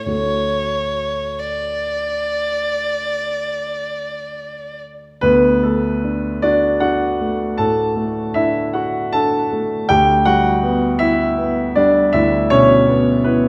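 A tender, romantic classical fragment opens with a warm, expressive bowed violin melody, sung with vibrato, soft attacks and portamento over a dark, mellow grand piano accompaniment in a rubato 12/8, both up front in a reverberant recital hall, until the violin stops at 4.8 s and the piano carries on alone to 13.5 s.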